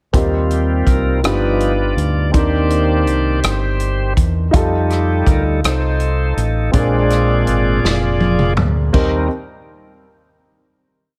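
Light reverb and a small-room ambience frame this short, hopeful and reverent slow gospel piece in 6/8 at 55 BPM in E-flat major, where a reedy, lightly overdriven tonewheel organ with key click and a slow rotary speaker takes the lead with held drop-2 chords from 0.1 to 8.9 seconds. A woody upright piano with audible action noise supports it with long-sustained, close-voiced chords, while a dark, round fingered electric bass sits up front with slides and chromatic approach notes. A natural studio drum kit with a punchy kick and medium-tuned snare keeps a slow six-eight groove, plays a fill from 7.8 seconds, and gives way to a final E-flat sixth chord at 8.9 seconds.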